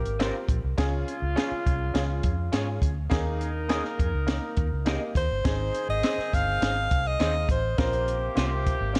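A straight 4/4 groove at 103 BPM drives this joyful, uplifting 1960s-style soul excerpt in Ab major, carried by a compact cocktail drum kit with a high-tuned snare, punchy kick and dark, gritty sampler texture up front, alongside a round, foam-muted fingered electric bass. A woody upright piano with audible action noise and a slightly detuned character comps alongside a mellow, distant horn section, while a slightly broken-up electric guitar through a small old amp adds phaser-tinged stabs in the background. A close-miked alto saxophone with light vibrato, soft attack and analog delay sings the jazz-style melody, heard briefly at the opening and returning from 5.2 to 8.3 seconds over light studio reverb and a Bbsus2, Db, Ebsus4, Ab progression.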